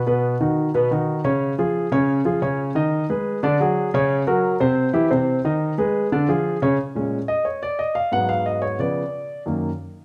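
Fiery and sophisticated, this short jazz excerpt moves at a brisk 179 BPM in a straight 4/4 feel, cut from a longer piece. A lone warm grand piano carries everything from 0.1 to 9.7 seconds, ranging from Gb2 up to Gb5 with an intimate, natural tone, long sustain and audible action noise, sitting up front in the mix. The harmony shifts restlessly through colorful chords such as Badd9, Dmaj7#11 and Abm/Eb before the second section begins at 6.8 seconds, where the piano takes a solo over a Bbm7, Abm7 and Db7b9 turn that settles on Gb6. A moderate large-studio reverb lends the instrument a sense of space around its close, warm sound. The tuning sits slightly below standard pitch, at A4 = 437 Hz.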